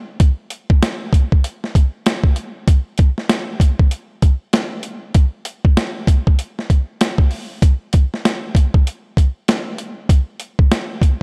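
Hip hop in a smoky, nocturnal mood, this excerpt rides a 97 BPM groove in 4/4 with a swung sixteenth-note feel. A boom bap sampler-style drum kit carries the excerpt from 0.2 to 11.2 seconds, its hi-hat, thumpy kick and high-tuned snare sounding gritty, compressed and pitched down, sitting up front in the mix. Light reverb gives the drums a little space, and the opening section repeats at 7.6 seconds.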